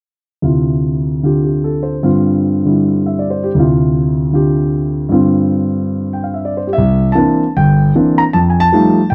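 Swinging and relaxed, this short solo jazz passage, cut from a longer piece, moves at 152 BPM in 4/4 with a lilting swing on the eighths and a loose, rubato feel in C mixolydian. A warm concert grand piano plays alone from 0.4 to 9.1 s, its natural tone sitting up front with deep bass reaching down to G1 and up to Bb5, circling between Dm9 and G7sus4 before shifting to C9 at 6.7 s and F9 at 8.3 s. The sound is dry and close, in the manner of a 1970s studio recording, touched by light reverb.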